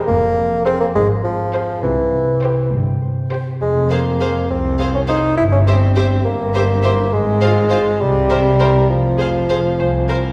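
Set in a 6/8 metre at 68 BPM, this playful, whimsical film cue in F minor opens with a mellow, ringing concert harp spinning thumb-plucked arpeggios in the background. A classical-style solo bassoon sits up front with its accompaniment, over a lush, focused double bass section and a distant, expressive cello section. At 0.7 s the chamber strings join: a sul tasto, softly attacked violin section carries a faint, intimate melody, a second violin line holds C5, and a smooth-topped viola section fills in the accompaniment, all over Fm and C harmony. A wet scoring-stage reverb sets the ensemble further back in the room, lending a magical, mischievous air to this fragment of a longer piece.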